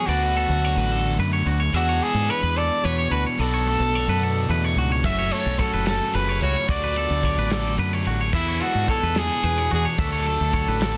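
A forceful, brilliant trumpet with slapback echo and plate reverb carries the melody up front over a punchy, round overdriven bass, bright clean twelve-string and twangy picked arpeggios, and a double-tracked cranked stack riff in this bright, intricate math rock and midwest emo excerpt in 6/8, with a loose indie drum kit joining in the background at 5.0 seconds.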